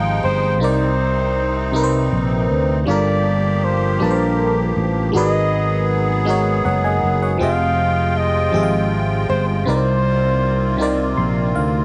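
A mellow, close-miked flugelhorn carries the melody with soft, scooped notes in a jazz style, floating over a sultry, late-night slow R&B groove in 6/8 at 53 BPM in F dorian. Beneath it, a growly, amped fretless bass sits up front with analog chorus, while a glassy FM electric piano with bell-like attack, chorus and phaser plays the accompaniment and adds a fill at 10.8 seconds. A reedy, shimmering musette accordion holds sustained chords through minor-ninth harmonies in a small, lightly reverberant room, in this section cut from a longer piece.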